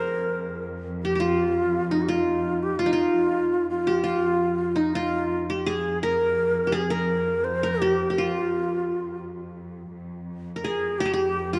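A breathy, end-blown ney with vibrato carries the up-front second line beside the bright, fingerpicked qanun melody, while a distant, lush bowed cello section holds a smooth F drone throughout this melancholic, hypnotic Turkish makam ensemble passage in F makam ussak at 84 BPM in a straight 4/4, cut from a longer piece and bathed in a 3.0-second plate reverb within a rough home demo mix.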